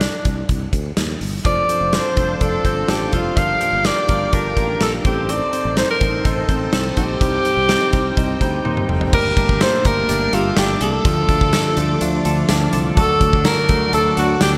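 1980s-style pop with a moody, nostalgic air, this excerpt puts a bright alto saxophone up front on the melody, its vibrato trailed by delay, over a growly, warm fretless bass and a huge arena drum kit with a dark, smooth tone, a medium-tuned snare, tambourine and toms, the whole kit soaked in gated reverb. At 1.4 seconds a mellow tine electric piano joins with clean accompaniment, while a twangy, picked twelve-string electric guitar plays a compressed riff with subtle chorus and a lush vintage string machine holds sustained chords through phaser and ensemble chorus, both sitting in the background. A drum fill leads into a new section at 9.1 seconds, where a glassy FM synth bell adds a crystalline second line with chorus, and the electric piano later slips in a short fill. The harmony drifts through minor and diminished colours before coming to rest on a D major chord. The bright 1980s-style digital production wraps the parts in a moderate, lush hall reverb.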